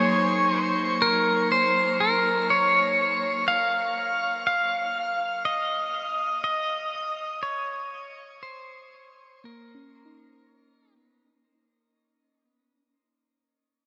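Luminous and peaceful, this short ambient fragment puts a bright, twangy pedal steel guitar up front, its clean fingerpicked slide melody shaped by volume swells and trailed by tape echo. Beneath it, muted felt-like synth keys play soft, dark arpeggios with chorus and tape echo, moving from Gb to Ebsus2 at 3.5 seconds. A long shimmer reverb and a dulled cassette-tape sound wash over the piece as it fades out from 0.9 seconds onward.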